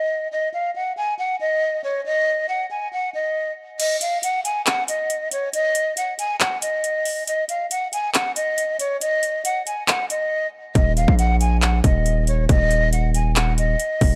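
Trap-leaning hip hop in Eb minor at 138 BPM with a half-time feel, brooding and hard-hitting, this excerpt opens with a breathy jazz flute carrying the melody alone, its unsteady vibrato softened by a low-pass filter and trailed by digital delay. At 3.8 seconds the overdriven trap kit enters with metallic hi-hats, handclaps and crash cymbal while the kick stays muted, and after a brief break the hard-clipped kick arrives at 10.8 seconds alongside a heavy, saturated 808-style bass. Light reverb and digital ambience surround the up-front flute, drums and bass.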